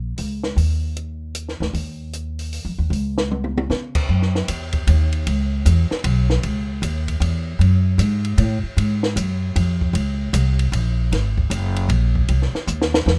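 Spiritual and searching, this swinging modal jazz waltz fragment pairs a woody, thumpy pizzicato upright bass on gut strings, up front from the start, with a compact cocktail drum kit entering at 0.2 s, its dark cymbals, high-tuned snare and punchy kick heard in a tight, dry booth, with a drum fill at 3.3 seconds leading into a longer second section at 4.1 seconds and another fill at 12.7 seconds.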